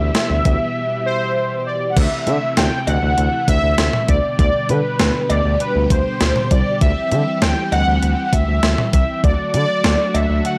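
An upbeat, nostalgic synth-pop passage at 99 BPM opens on a bold, detuned analog synth brass melody with chorus and a filter sweep, set over shimmering string machine violins holding sustained chords with ensemble chorus and a smooth, wave-folded synth bass gliding with portamento. A gated 80s digital drum machine, overdriven and up front, adds a thumpy kick, gated-reverb snare, hi-hat, toms, cowbell and crash, with a break from 0.8 to 2.0 seconds before the harmony moves from C/D through Am/D and G/D, back to C/D, and on to a plain D at 9.2 seconds. The sound is dry and gritty, with little reverb.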